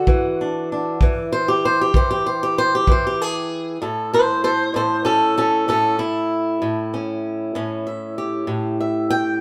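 A fingerpicked steel-string acoustic guitar sits up front in this rollicking, swaggering piece of acoustic country blues, its bright, boxy tone carrying the melody from 0.0 s to 9.4 s with fresh strings and audible finger squeak. The guitar's swing-style picking rides a straight 12/8 pulse and ranges from low bass notes up to high treble notes. A tight kick drum played with brushes sits close and up front from 0.1 s until it stops at 3.0 s, after which the guitar carries on alone. The harmony rests on E7 before moving to A7 at 3.8 s, where the guitar breaks into a solo that runs to the end. A moderate stone-room reverb gives the live, one-room performance a natural sense of space in this short cut from a longer piece.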